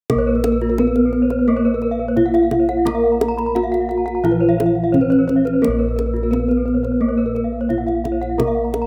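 A rough home demo with light reverb and small room ambience frames this ceremonial Balinese gamelan fragment in Bb pelog at 87 BPM in 4/4: a mellow bronze metallophone struck with padded disc mallets carries the melody over a bright horn-mallet metallophone accompaniment, two more metallophones play arpeggios (one boxy and horn-struck, the other sounded with a wooden mallet), round bossed gongs hold the bass, and a tight, dry kendang supplies the percussion, while paired tuning gives every metallophone its shimmering beats.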